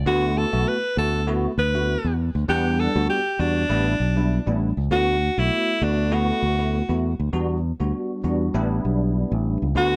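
Romantic and joyful, this short afrobeats cut at 99 BPM in D major swings lightly on a 16th-note feel, with a round, punchy fingered electric bass up front, an edgy alto saxophone solo in pop style with scooped notes and delay, and a bell-like tine electric piano accompanying clean and bright through ensemble chorus, all set in light reverb as the D6, Em7 and A7sus4 progression repeats when a second section begins at 4.9 seconds.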